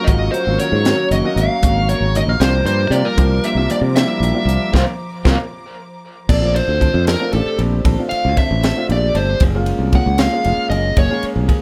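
A dark, overdriven lead guitar carries the melody up front in this bright, slick electric jazz fusion excerpt in 6/8, backed by a growly, punchy fingered bass, crisp drums with a high-tuned snare, and a concert grand piano with deep bass and long sustain. A clean, compressed electric guitar with subtle chorus adds stabs in the background, while a lush bowed string section holds sustained chords until 6.3 s. After a band accent and drum fill, the lead guitar takes a solo from 6.3 s over major ninth chords, all in a light reverb.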